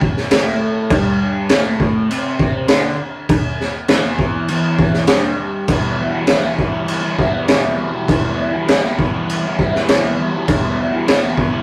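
A crunchy, overdriven electric guitar riff and a raw garage drum kit kick off together, setting a swaggering, gritty garage rock groove at 100 BPM in a straight 4/4, in E minor with tuning a touch sharp at A4 = 441 Hz. The picked, double-tracked guitar sits up front with a bright edge and a phaser coloring its tone. It spans E2 to E4, moving from an opening before any chord is set onto a G5 power chord at 0.9 seconds, then shifting to E minor when the second section arrives at 5.7 seconds. The drums are equally up front: a saturated, mid-forward acoustic kit with a punchy kick, a high-tuned snare and crash cymbal, its rolled-off top giving it a warm, small-room character. A moderate stone room reverb and the rough rehearsal-room sound lend the performance a loose, live immediacy in this short section cut from a longer piece.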